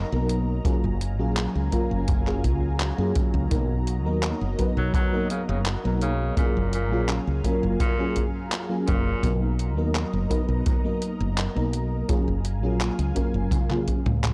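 A warbling, detuned FM electric piano with a soft pad layer opens this faded, dreamy vaporwave fragment, smeared by ensemble chorus, cassette tape and tape echo, over a thick sawtooth unison pad with chorus, phaser and 12-bit sampler grit, and an up-front, woody fretless bass, all circling Bmaj7 and F#maj9. A detuned 8-bit drum machine of handclaps, hi-hat and toms joins with a distant, boomy acoustic kick. A clear tenor saxophone with light vibrato and scooped notes plays a brief, echoing solo between 4.8 and 9.3 seconds before a drum fill at 13.5 seconds, all in a dry sound.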